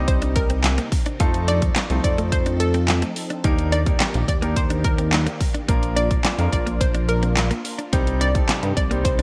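Up front, a punchy pop drum kit with a fat snare, handclaps, hi-hat and gated reverb drives this upbeat, summery dance-pop excerpt at 107 BPM in 4/4 with a straight feel. Sharing the spotlight is a glossy, retro chorused synth bass with sidechain pumping, sitting low between Bb1 and G2 in Bb major. A round analog pluck carries the melody from 0.1 seconds, its chorus and digital delay adding sparkle, while an intimate grand piano, with audible action noise and sidechain pumping, plays accompaniment. A clean, direct-recorded electric guitar riffs in the background with subtle chorus, and a silky string machine holds very quiet sustained chords through phaser and ensemble chorus. A barely audible downlifter sweeps in the opening 1.2 seconds as the chords move from Cm through F7, Ebmaj7 and Bb before returning to Cm, all within a bright 1980s-style digital production with light reverb.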